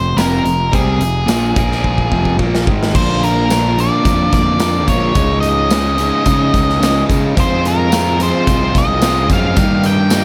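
A swaggering, gritty classic rock passage in F minor at 109 BPM opens with a dark, octave-fuzz lead guitar carrying the melody up front over two picked riff guitars in the background, one bright and cranked, the other crunchy and warm, while a growly, fuzzed fingered bass rumbles underneath. A big rock kit with a punchy kick, medium-tuned snare, bright crash and hi-hat, plus tambourine, comes in at 0.2 seconds and plays a fill from 1.8 seconds into a new section at 2.9 seconds. The harmony there moves from Bb through Dbsus2 back to Fm before landing on Eb/G, all set in a studio reverb.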